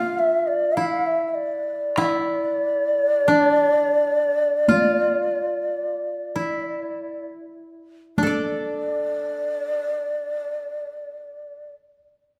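A breathy, end-blown shakuhachi carries the melody with vibrato and a crisp chiff on each attack, giving this still, austere fragment of Japanese chamber music its voice. A woody, dry koto played with fingerpicks sits close beneath it as a second line, while a taiko ensemble struck with hard sticks joins from 2.0 to 9.0 seconds. The rubato pulse slows through the opening 8.2 seconds before a new section begins, all set in the moderate reverb of a recital hall.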